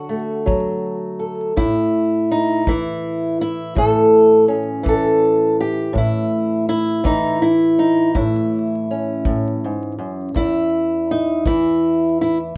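A slow 12/8 pulse at 55 beats per minute, played straight, carries this laid-back yet rollicking acoustic country blues in A major, cut from a longer piece. A fingerpicked old ladder-braced acoustic guitar sits up front with the melody, its dark, woody, boxy tone and old strings moving over D and A before the chords drop away at 10.3 seconds, while a tight, natural kick drum played with brushes sits lower in the mix from 0.5 to 11.6 seconds. A wet studio reverb and a layer of vinyl crackle color the recording.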